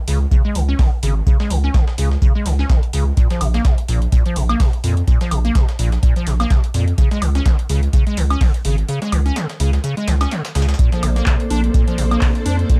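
Playful and raw, this acid house excerpt moves at 126 BPM with a swung sixteenth feel, built on an up-front deep electronic kick and a thick, saturated sine sub bass that pumps under the sidechain, while a squelchy, resonant square-wave acid bass riff carries 12-bit sampler grit, tube saturation, chorus and dub echo. A booming analog drum machine adds handclaps, woodblock and metallic hats, joined by a compressed, pitched-up breakbeat kit whose filtered snare, tambourine and hi-hats sound gritty. A break arrives at 8.9 seconds, and at 10.8 seconds a lush, full-bodied vintage string machine enters with slow-attack sustained Bbmaj9 chords in a dark, lightly reverberant mix.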